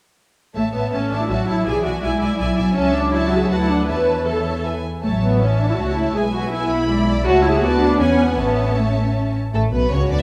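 Opening at 0.5 s with an up-front viola section bending between notes with portamento beneath a bowed second violin line, this cheerful, spirited excerpt from a quick classical-period movement for string orchestra in A major, at 161 BPM in 3/4 with a rubato feel, soon brings in a lush, expressive violin melody with vibrato, an up-front double bass section that also slides with portamento, and a smooth, even cello section, heard on a scoring stage with moderate reverb and a dark production.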